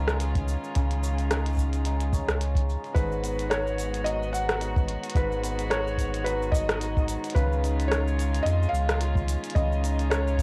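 A felt-muted upright piano, intimate and soft with audible action noise and a touch of analog delay, carries the melody from 2.9 seconds in this delicate, wistful folktronica excerpt at 109 BPM in G# dorian, with a light 16th-note swing. Beneath it, a shimmering hammered dulcimer rings out arpeggios and a chamber string quartet holds bowed, vibrato-rich chords, both tinted by cassette tape, while a round sine sub bass sits up front over C#add9 and G#m7 harmonies. An overdriven electronic kit of clicky hats, cabasa and rim clicks plays alongside a dark, boomy acoustic kick, and the piece has the feel of a home cassette recording with light reverb.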